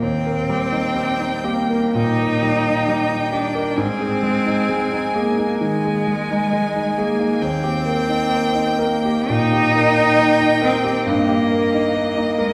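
An intense, up-front cello sings the second line with vibrato and a smooth top, set against a concert grand piano whose clear accompaniment brings deep bass and long sustain in this slow, romantic piano trio movement, cut from a longer piece. Above them, a single violin carries the melody with a rich, even, bowed tone and vibrato, while the elegiac, yearning mood unfolds in Eb major at about 65 BPM with free, rubato timing. A wet church reverb with a long tail surrounds the trio, giving the hall a spacious, resonant feel.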